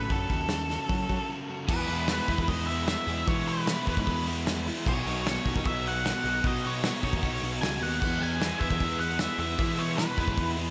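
Carefree yet wistful, this indie rock passage cut from a longer piece drives along in a straight four at a brisk clip. A dark, fuzzy octave-fuzz lead guitar carries the melody from the start, its distortion trailed by slapback echo and analog delay, while a crunchy overdriven guitar plays a riff beneath it with its own slapback echo. An overdriven picked bass, direct and amped, holds the low end, and a loose acoustic drum kit sits up front with a punchy kick, medium-tuned snare, dark cymbals and a rolled-off top, with a crash and hi-hat in the mix. After a brief break at 1.3 seconds, a bright overdriven guitar enters at 1.7 seconds in the background with lush chorus and slapback echo, as the harmony moves from F#m to E, then Badd9, and back to E. A moderate, lush hall reverb over small room ambience gives the whole band a big arena sound.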